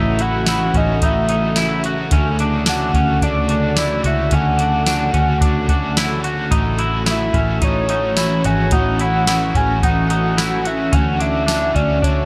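A soft vintage rhythm box sets a straight 4/4 pulse at 109 BPM, its deep kick, crisp snare, metallic hats and tambourine carrying a tape-softened analog tone from a large room. This is a blissful, floating dream pop excerpt that drifts between A6 and Dmaj7 chords. A dark, round, foam-muted fingered bass sits low underneath, while a warbling, lo-fi pad of detuned sawtooth and triangle tones holds nostalgic sustained chords with chorus and its own reverb. Two guitars fill the middle: a bright, overdriven semi-hollow guitar, picked and double-tracked with harmonic tremolo and subtle chorus, and a twangy, compressed clean guitar playing arpeggios through lush chorus and tape echo. On top, a full octave-layered synth lead with a sub octave, vibrato and a soft attack sings the melody through chorus, phaser and tape echo, all under a light reverb.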